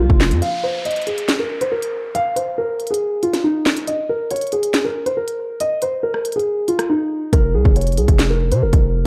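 A dark, boxy grand piano opens a tense, menacing half-time drill cut from a longer piece, its melody filtered and echoed by delay, while a distorted, saturated 808-style bass hits briefly before dropping out for a break in which an electronic downlifter sounds beneath an up-front drill kit of hard-clipped kick, sharp snare, crisp hats, handclaps and rim clicks re-recorded in a large room, until a short silent gap gives way to the heavy bass returning at 7.3 seconds.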